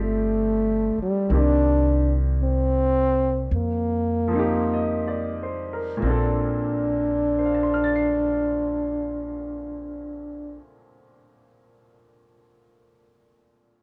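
This intimate, late-night jazz ballad opens with trombone, piano and upright bass together in Bb major. The tempo sits between 44 and 60 BPM in a swung 4/4 and slows over the first 6 seconds. The mellow trombone carries the solo melody up front, with light vibrato and scooped notes, set in a plate reverb. Beneath it, the brilliant, open upright piano accompanies across a broad range, and the pizzicato upright bass gives a woody, thumpy pulse from steel strings. The harmony moves through G7sus4, Cm7 and F7sus4 before settling on Bbmaj9 at 6.0 seconds. Trombone and bass stop at 10.6 seconds, leaving the piano alone until 13.8 seconds in a dark production with light reverb, cut from a longer piece.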